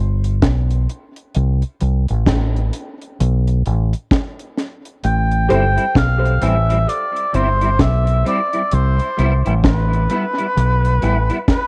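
A round, punchy fingered electric bass opens this hypnotic, meditative dub reggae excerpt in A minor at 65 BPM, joined almost at once by a dry, dark drum kit with a tight kick, a high-tuned snare and a rolled-off top, both sitting up front, the bass thickened by tube saturation and the drums carrying cassette grit and tape echo. At 5.1 seconds a solo oboe takes the melody with a soft attack and light vibrato in a classical style. Just after, at 5.5 seconds, a clean, picked electric guitar with ensemble chorus adds chords over Am7 and Cmaj7, and a brief, muted sawtooth chord stab with a phaser flickers past, all set in a small, lightly reverberant room.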